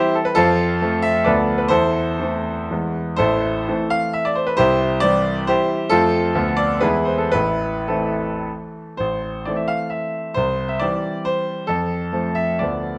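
Close, detailed microphones place a clear, open concert grand up front, its deep bass ringing into a moderate recital-hall reverb. This short excerpt of a romantic classical piano solo is a triple-time dance in dotted rhythms, played with supple rubato that makes it feel both nostalgic and capricious. The opening passage cycles through F, Bm7b5/D, Am/E and E before settling on Am, and a new section arrives at 9.0 s, moving from C to F.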